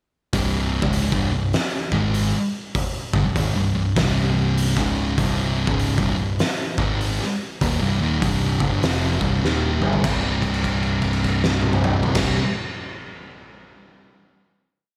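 A swung, big half-time groove from an oversized, low-tuned acoustic drum kit, up front with a boomy kick, fat snare and a muffled, gritty, rolled-off lo-fi sound in a bright stone room, drives this heavy, ominous stoner and doom metal piece, where two thick fuzz guitars, one in the background with a darker tone, grind out a power-chord riff, doubled in quarters by a growly, overdriven picked bass, until a drum fill at 9.4 s leads into a final chord struck at 10.0 s and held to 12.1 s.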